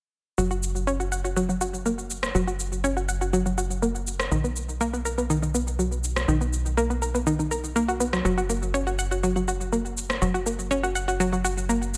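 This progressive house excerpt feels hopeful and expansive, led by a round, detuned analog pluck that plays up-front arpeggios through chorus and tape echo, with a filter sweep running across it from 0.4 seconds. Beneath it sits a tight, punchy sequencer bass with a saturated sawtooth edge, while the harmony moves from an open start to Bmaj7 at 4.3 seconds and F# at 8.2 seconds. An electronic shaker and rim click, layered and tape-tinged with the air of a large room, sit further back, all under a light digital ambience.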